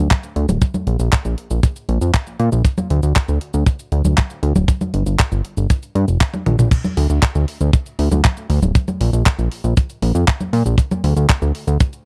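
A fat analog bass opens this bittersweet, nostalgic italo disco excerpt at 118 BPM in a straight 4/4. Its detuned sawtooth, square and triangle tones are thickened by tube saturation, ring modulation and a filter sweep, with a fast attack and sustained notes sitting up front between D1 and Bb2. A tight, mid-forward acoustic kick drum arrives at 0.1 s alongside a clean 12-bit drum machine with a sampler-style, tape-tinged sound re-recorded in a large room, supplying cabasa, congas, crash cymbal, handclaps, hi-hat and toms, and a drum fill at 6.3 s leads into a new section at 6.7 s, all within a dry, close 1970s-style studio recording.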